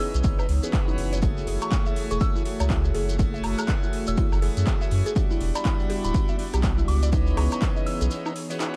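A swung 4/4 groove drives this moody, smooth deep house excerpt: a punchy, overdriven analog kick and a round sine sub bass sit up front, the sub pumping against the kick, while a layered deep house kit with metallic hats, handclaps and woodblock, a grainy close shekere, and a very quiet, gritty oversized low-tuned kit with a fat snare fill in the rhythm. A bright, shouting tonewheel organ with key click and slow rotary speaker plays overdriven stabs through C#m9, F#m9 and Em9, backed by an airy, breathy pumping pad, a woody FM mallet pluck running arpeggios with dub echo, and a soft, pure chorused bell melody drifting in the background. The production is dark and dry, and the kick drops out at 7.7 seconds before the bass ends at 8.1 seconds for a short break.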